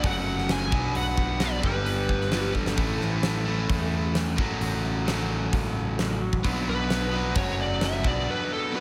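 A huge arena drum kit with a fat snare and punchy kick drives a straight 131 BPM classic rock groove in 4/4, with a fill at 2.6 seconds, over a growling, overdriven picked bass. Two warm, overdriven picked guitars carry the riff through F#m, Bm, G and A, one biting and low, the other higher, while a smooth, bright lead guitar sings the melody at the start and returns at 6.7 seconds. Around 2.3 seconds a clean, compressed lap steel with slide and volume swells drifts in the background, and small room reverb frames this driving, sunny cut from a longer piece.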